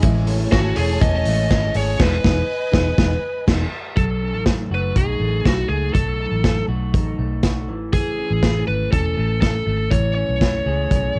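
A biting, overdriven lead guitar carries the melody from 0.5 seconds in this bright, youthful excerpt of jangly indie pop, over twangy, slightly broken-up electric guitar arpeggios with spring reverb, a round, foam-muted vintage bass, a punchy, up-front vintage drum kit with dark cymbals and a cassette-tape tint it shares with the lead, and, dropping out by about 4 seconds, a fingerpicked steel-string acoustic guitar in the background and slow-attack sawtooth string-machine violas with ensemble chorus, all captured as a dry home cassette recording where the band hits an accent between 2.0 and 4.0 seconds.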